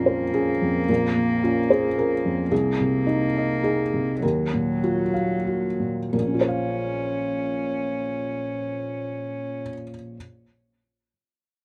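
A felt-muted upright piano and a bowed cello open this fragile, longing neoclassical excerpt together, in a rubato 3/4 in Bb minor that moves between 89 and 111 BPM and slows from 1.7 to 6.1 seconds. The piano carries the accompaniment with a dark, boxy, intimate tone and audible action noise, while the single cello plays a pure, floating second line with a soft attack, touched by slapback echo. A new passage begins at 6.1 seconds, and the cello falls silent at 9.6 seconds, leaving the piano alone in the light reverb of an open-air setting.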